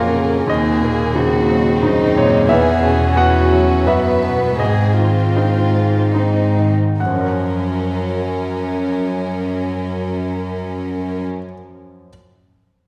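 A bright, brilliant concert grand piano accompanies this tender, uplifting excerpt from a cinematic film score, its deep bass and long sustain ringing up front in a free, rubato 3/4 that slows between 1.5 and 7.0 seconds. An intimate chamber violin section adds a soft, vibrato-touched second line played sul tasto, while a distant, floating symphonic cello section holds the bass beneath, both strings stopping at 11.2 seconds as the piano continues to 12.1. The trio sits in a wet recital hall reverb, moving through Ebm7, Esus2 and Ab before settling on Gbmaj7 at 7.0 seconds.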